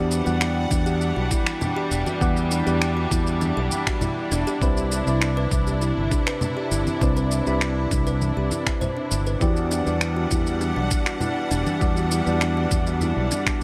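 A punchy, up-front fretless electric bass stands out in this wistful, warm sunset chillout excerpt in E minor, moving at 100 BPM in a straight 4/4 and cut from a longer piece. Soft, round electric-piano-like synth keys with chorus and delay play mellow accompaniment, while a clear symphonic string section holds smooth, lightly vibrato-touched chords. A woody, close-miked kalimba spins short plucked arpeggios through a touch of delay. The shaker and finger snaps begin at 0.1 seconds, and a gritty, thumpy overdriven kick enters with soft-handed congas at 0.7 seconds, the bright congas sitting in the background. The harmony moves from Em9 to Cmaj9 and back, all set in a light, small-room reverb.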